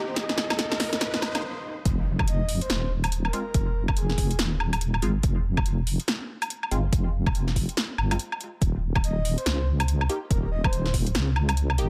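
A cavernous, dark wash of digital ambience opens this short cut from a longer deep dubstep piece, set in a swung, half-time 4/4 groove. It begins with a build-up: a drum fill and an electronic riser run under a filtered dub chord stab, whose muted, detuned sawtooth-and-square plucks carry phaser, analog chorus and dub echo through a filter sweep, before a brief break. The drop lands at 1.9 seconds with an impact and a deep, soft wobble bass, a detuned sawtooth-and-sine tone with chorus, sitting up front beside an overdriven kick re-recorded in a large room. The deep house kit adds a punchy snare, metallic hats and woodblock, also overdriven and placed forward in the mix. Floating above, a breathy, flute-like synth lead with vibrato, a noise layer and a sub octave sings its melody in two phrases, the second returning at 9.0 seconds, its soft tone trailed by chorus and dub echo.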